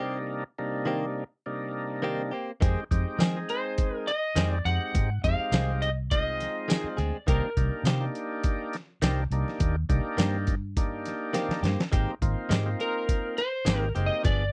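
A dark, slightly broken-up electric slide guitar carries the mournful melody up front in this smoky, straight-eighth soul blues fragment, entering at 3.5 seconds and returning near the end. A thick tonewheel organ with key click, light overdrive and slow rotary speaker opens alongside bright, twangy clean guitar stabs, before a gritty, pitched-down boom bap drum kit with thumpy kick, tambourine and a fill at 11.3 seconds arrives with a round, foam-muted bass at 2.6 seconds. The sound is dry and close, with a 1970s studio character over a minor-seventh progression that moves to a major-seventh chord late on.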